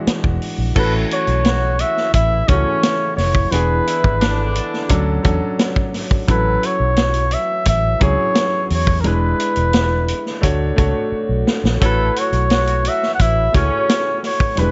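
Lush and romantic, this excerpt of 1970s-style soul moves at an easy, straight 4/4 pace, led by an up-front flugelhorn with light vibrato and a smooth top, carrying the melody over polished baby grand piano chords. A round, foam-muted electric bass and a punchy vintage drum kit with dark cymbals sit forward in a small room, with a drum fill at 11.1 seconds, while a tight, mellow horn section adds stabs and a distant French horn section holds very quiet sustained chords. The harmony drifts through extended chords such as A6, E7 and Dmaj7, giving the piece a velvety, rolled-off sheen.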